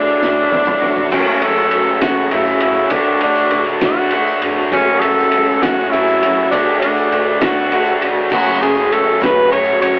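A clear tenor saxophone opens this folk rock and heartland rock excerpt with a short vibrato-laden solo, sitting up front over a Dadd9 chord. At 0.2 seconds a muffled, cloth-damped drum kit enters with a fill, its fat snare, tight kick and dark cymbals sounding gritty and rolled off, joined by a very quiet, jingly tambourine. The music settles into an open-road, jangly 6/8 at 67 BPM, alternating between F#m and D from 1.1 seconds, with a picked steel-string acoustic guitar and its finger squeaks accompanying a bright, overdriven, double-tracked garage guitar riff. A very quiet tonewheel organ holds full, shouting chords through a slow rotary speaker with key click, while a woody, thumpy pizzicato upright bass stays in the background. The whole take has a rough rehearsal-room, telephone-like quality with moderate reverb.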